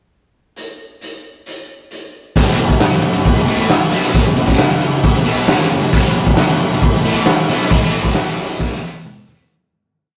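Raw and rowdy, this short garage rock piece at 134 BPM opens with an up-front acoustic drum kit with a fat snare and punchy kick playing a pickup bar alone from 0.6 seconds, before a thick, double-tracked electric fuzz guitar crashes in at 2.4 seconds with a distorted power-chord riff on F#5. It is all set in a gritty rehearsal-room sound with stone-room reverb, and the track fades out from 7.7 seconds before closing on a drum fill from 8.6 seconds.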